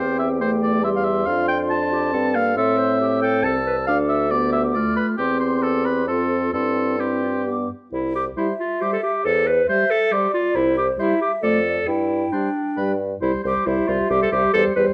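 A hollow, pure silver concert flute with vibrato carries the melody in this graceful, cheerful, quick classical-period wind quintet movement in 3/4 at 137 BPM in C major, heard as a 14.9-second cut from a longer piece, while a roomy, lightly vibrato oboe sings a second line, a clear, soft-attacked clarinet and a dark, distant French horn fill in the accompaniment, and a mellow bassoon anchors the bass, all set in a moderate large-studio reverb.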